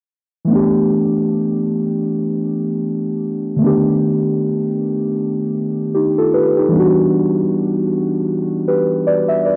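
A lazy 4/4 groove with swung sixteenths carries this mellow, cosy hip hop fragment, cut from a longer piece. Muted, felt-like synth keys play alone from 0.4 to 9.6 seconds, dark and intimate with a fast attack that decays softly, a noise layer, and a chorus and cassette-tape haze over their up-front sound as they move through G6, B7alt and Em7. Light reverb and the character of a home cassette recording add to the cosy feel.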